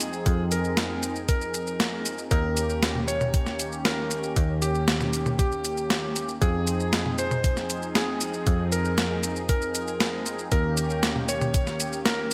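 Bright 1980s-style digital production sits in a lush hall reverb on this moody, nostalgic synthwave clip in F minor at 117 BPM, moving between Fm7 and Eb7 in straight 4/4. A clear, vintage electric grand piano carries the melody through delay over a brassy, detuned sawtooth pad with chorus, vibrato and sidechain pumping, while a growly, foam-muted picked electric bass pumps beneath. Up front, a clean 12-bit drum machine with a medium-tuned snare, hi-hat, shaker and toms is treated with gated reverb, joined at 0.3 s by a thumpy, sampler-style electronic kick that drops out at 11.6 s.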